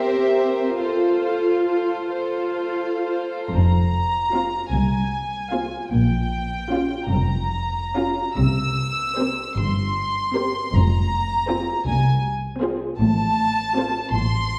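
A dark chamber violin section carries the melody, sitting close and up front with a soft-attacked sul tasto tone lightly touched by vibrato, in this tender, slow romantic movement for string orchestra. Beneath it, a studio violin section sings a pure, smooth second line, while the violas fill in the accompaniment with a woody, lush vibrato. The cellos supply a rich bowed bass, and from 3.5 s the double basses join them with a floating, gentle foundation just as the key turns from F major to F minor. Moving in a rubato 6/8 at roughly 41-54 BPM counted in dotted quarters, the harmony passes through Bbm and C7 before settling on F/A at 13.0 s. A wet recital hall reverb surrounds the ensemble in a warm production, and the passage is cut from a longer piece.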